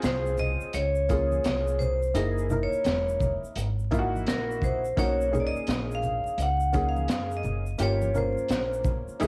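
This mellow, smoky jazz-hop excerpt opens with a worn, slightly detuned upright piano providing accompaniment with a cassette-tape character, alongside a woody, dark pizzicato upright bass and a crunchy breakbeat kit with a swung sixteenth-note feel. Almost at once, at 0.1 s, a hard-mallet vibraphone takes the lead with a bright, airy, ringing solo that stays up front and carries its own cassette-tape tint until 8.8 s. The drums sit close and gritty, with a tight kick, a high-tuned snare, hi-hat and shaker under a saturated, rolled-off top. Tube shaker and congas sit softly in the background of a small room, adding gentle texture. The harmony drifts through Bbm9, Gb13, Bmaj9 and Gm7b5, while light reverb, a home-cassette sound and vinyl crackle give the whole piece a lo-fi haze.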